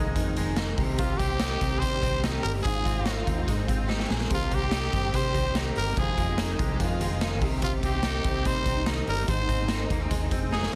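Bittersweet and restless, this jangly indie pop excerpt moves in a straight 4/4 over a cycle of Fm7, Cm and Ab chords. A growling, raspy trumpet carries the melody from 1.0 s, present and punchy with a light vibrato and a touch of delay. Beneath it, a clean, twangy electric guitar recorded direct plays arpeggios through ensemble chorus and delay, while a very quiet, full-bodied jumbo acoustic guitar adds picked accompaniment. A lush, bowed violin section sits distant in the background as a second line, and a dark, round, foam-muted electric bass holds the low end. The saturated garage drum kit is up front, with a boomy kick, a medium-tuned snare, a rolled-off top and a pumping stone-room sound, adding fills at 3.9 s and 10.5 s. Light reverb and a small room ambience frame a dense, heavily limited modern master.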